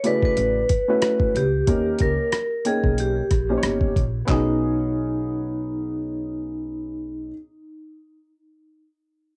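Jazz-hop with a cool, warm mood and a swung sixteenth-note feel, this short cut from a longer piece sounds like a home recording on cassette, with light reverb around the parts. A bright, ringing vibraphone struck with medium hard mallets carries the melody, its metallic tone shimmering with fast motor vibrato and trailing an analog delay through tape grit. An upright piano plays alongside it in accompaniment, woody and slightly detuned, with short, natural-sounding notes. A sampler-style soul drum kit, gritty and compressed, plays a thumpy kick, hi-hat, rim click and handclaps until 4.5 seconds, while a dark, pizzicato upright bass with gut strings enters at 0.4 seconds and holds the low end. The harmony drifts from Dmaj13 to D#7 before settling on B6 as the second section begins at 4.3 seconds.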